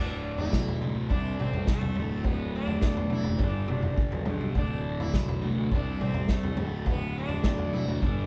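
A buzzing, shimmering sitar melody opens this trippy, kaleidoscopic psychedelic rock passage, set against a thick, double-tracked fuzz guitar riff run through a phaser and a picked fuzz bass tucked in the background. The drums join at 0.4 s. The plectrum-plucked sitar moves between A3 and E4, its sympathetic strings ringing around a round tone and a slapback echo on its line. The distorted guitar stays up front across a range from D2 to C4, while the overdriven bass adds grit down low. At a straight 104 BPM in 4/4, the acoustic kit brings a punchy kick, a medium-tuned snare and toms, with a pumping small-room sound and a rolled-off top. The chords circle D5 and C5, with a Gmaj7 arriving at 3.4 s, and the band plays together live in one room under light reverb, tuned to A4 = 437 Hz.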